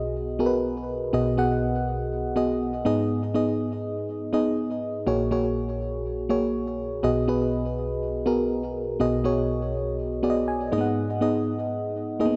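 Bathed in a lush hall reverb, this nostalgic, uplifting pop excerpt at 122 BPM in B major rests entirely on a solo FM electric piano, up front with a dark, warbling vintage tone, a noise layer and delay, gently swung over B6, G#m and F#add9/A# chords before a short fill at 10.2 seconds.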